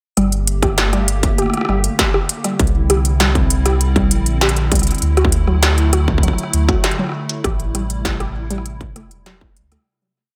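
A glitched, ever-changing beat at 99 BPM in straight 4/4 drives this short, eerie IDM piece in G melodic minor: an up-front industrial kit of smooth closed hats, rim clicks and a clanging snare, joined at 0.6 s by a distorted electronic kick in a broken pattern. Beneath it, a round sine sub bass holds long gliding notes, while a hollow, flute-like pad with ensemble chorus and 12-bit sampler grit sustains chords moving from Gmadd9 through Cadd9 and Dadd9 to Am7. On top, a dusty lo-fi pluck with chorus and tape echo repeats an intricate 5-step arpeggio loop that drifts against the bar, and the dry mix fades out from 6.6 s.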